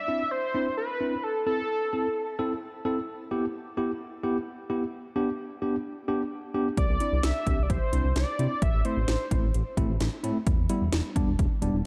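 Synth-pop with an upbeat, nostalgic mood, cut from a longer piece, opens on a bold, retro octave-doubled sawtooth lead carrying the melody with chorus, vibrato and tape echo. A tine electric piano with medium tremolo and shimmer reverb joins a moment later, playing accompaniment over chords moving from Cadd9 through Am, Em and G. The lead then returns as a smooth, mellow synth bass and an overdriven house drum kit with a punchy kick, cracking snare and metallic hats enter at 6.8 seconds, all set in a lush hall reverb within a dark production.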